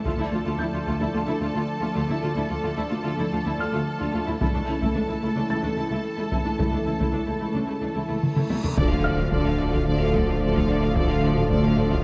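Opening on distant, lush bowed violins, a chorused sawtooth analog pad, expressive cellos and a soft felt-muted upright piano with tape echo, this vast, futuristic hybrid orchestral and electronic film cue in D harmonic minor at 110 BPM adds portamento violas, glassy detuned wavetable pluck arpeggios and heavy, vintage taiko drums, moving from Dm to A/C# before a huge reverse cymbal at 8.5 s and an impact at 8.8 s bring in a violin melody over dark French horns, clear trombones, a mellow tuba, woody double basses and a deep, round sub bass, set in a dark, warm production with moderate scoring-stage reverb.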